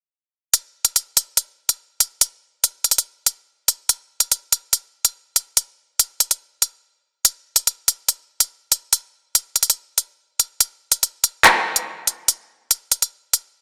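A crisp, up-front drum sound sits in a moderate hall reverb, giving this short hip hop fragment a cold, menacing air. A drill drum kit carries the whole piece, electronic and produced, with sharp hi-hats and handclaps driving a half-time feel at 143 BPM in 4/4. The kit enters at 0.5 seconds and plays alone as the only part. At 6.8 seconds the drums drop out briefly, returning at 7.2 seconds. The pattern then carries on until the kit stops at 13.4 seconds, closing this passage cut from a longer track.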